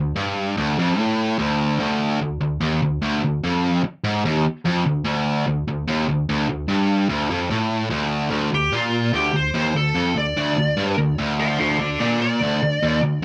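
A double-tracked, overdriven electric guitar opens this heavy, relentless metal piece with a low, picked riff in D minor at 147 BPM, its straight 4/4 feel played in half time for the first 8.3 seconds. At 8.5 seconds a bright, high-gain lead guitar enters up front with a distorted, picked solo melody in a higher register while the riff continues until 13.2 seconds, where the recording is cut from a longer piece. The production is dark and warm, with light reverb.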